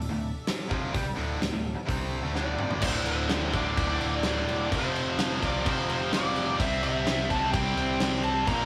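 Hard rock excerpt with an aggressive, heavy mood, where bright distorted rhythm guitars riff in the background over a growly, punchy overdriven bass and a big acoustic drum kit with a fat snare and tight kick, all in a rough rehearsal-room sound; a very quiet lush sawtooth pad sustains chords beneath, a drum fill at 2.4 seconds leads into a fuller passage where a double-tracked guitar joins at 2.8 seconds, and a dark, smooth overdriven lead guitar carries the melody from 2.4 seconds.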